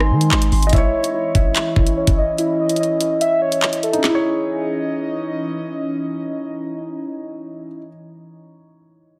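A half-time drill groove opens this tense, menacing hip hop excerpt, with an overdriven, up-front electronic kit of knocking kick, woody snare, bright hats, rim clicks and handclaps that drops out at 4.1 seconds, while a deep, sine-like 808 bass rings only through the first 0.7 seconds. Underneath, a dark, mellow concert grand piano carries the accompaniment, a warbling, nostalgic lo-fi pad holds detuned chords with chorus, phaser and built-in reverb, and muted, felt-like synth keys spin soft arpeggios through chorus and digital delay. From 0.7 to 5.2 seconds a velvety, smooth synth lead with vibrato, chorus and delay adds a second line over the gloom.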